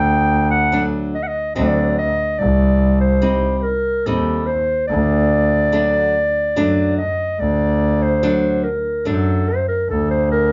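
Festive yet soulful, this short klezmer excerpt in 3/4 pairs a dark, smooth-topped clarinet playing a classical-style solo melody up front with a rich, earthy bowed double bass carrying light vibrato, while a fingerpicked acoustic flamenco guitar with audible finger squeak joins at 0.7 s and drops out at 9.5 s over chords moving from D to C minor and back to D, the whole performance captured in a small, reverberant room from further back with a softened high end.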